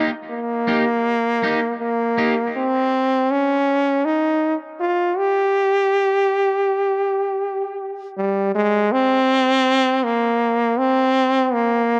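Reggae at 80 BPM in 4/4, this spacious, deep passage from a longer piece has a swung sixteenth-note feel and a tuning of A4 = 442 Hz. A brilliant trombone carries the solo melody throughout, up front and forceful in a pop style with vibrato, its punchy tone trailed by dub echo across a range from G3 to G4. For the opening 2.3 seconds, an electric guitar at the edge of break-up adds accompaniment over an Eb chord. Its fingered, twangy sound is slightly broken-up, touched by subtle chorus and its own dub echo. From 2.5 seconds the harmony falls away and the trombone plays alone, with a new section beginning at 8.5 seconds. The sound is that of a dry, close 1970s-style studio recording with light reverb.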